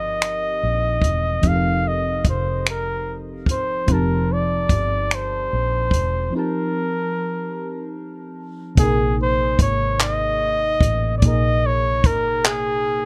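A close-miked flugelhorn with light vibrato, scooped notes and tape echo carries the melody up front in this sultry, late-night slow six-eight R&B excerpt, over a soft, round FM electric piano colored by chorus and phaser, a dark, foam-muted fingered electric bass, and a compact cocktail drum kit of finger snaps, handclaps, hi-hat and punchy kick, set in light reverb, with a break from 6.3 to 8.8 seconds before the harmony moves from F9sus4 to Bb9sus4 at 8.8 seconds.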